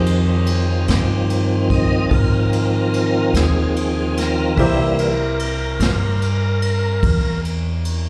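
A lightly overdriven tonewheel organ leads this short cut from a slow 12/8 blues. Its full sustained chords are colored by chorus vibrato and a slow rotary speaker, and it sits up front until it stops at 7.4 s. Beneath it, a woody, growly pizzicato upright bass and a distant, roomy brush kit with dark cymbals and a tight kick carry the soulful, mournful mood, while a brilliant baby grand piano accompanies in the background with a slapback echo, over harmony that moves from Fm7 to C7 and a sound like a live club gig heard through the venue's PA with club reverb.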